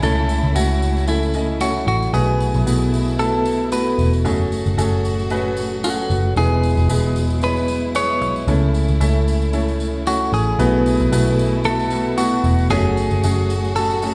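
Piano-driven pop at 114 BPM in 4/4, this dramatic, earnest passage carries a light swing on the sixteenths and is cut from a longer piece. A felt-muted upright piano sits up front with a soft, intimate, mellow tone, laying down the accompaniment throughout, while a vintage muted picked electric bass, dark, round and punchy, anchors the low end beside it. A clean, compressed electric guitar carries the melody in a narrow upper range, and a symphonic string section holds lush, bowed chords with vibrato in the background. A jingly tambourine adds light percussion across all 14.1 seconds. The harmony moves from A/C# through B7sus4, F#madd9 and E before circling back, the opening idea returning at 10.6 s, all wrapped in the wet reverb of a recital hall.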